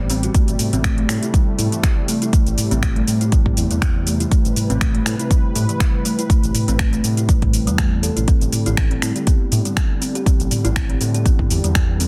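Riding a swung 121 BPM pulse in A minor, this earthy, hypnotic afro house excerpt pairs a deep, up-front electronic kick with a produced afro-pop kit of finger snaps, metallic hats, shaker, toms and a soft-clipped snare, while a mellow sawtooth-and-triangle synth bass, woody kalimba arpeggios trailed by tape echo, and a detuned, chorused analog pad all pump under sidechain as the harmony moves from Am7 to Csus2/A at 8.3 seconds, sealed in a dense, heavily limited digital ambience.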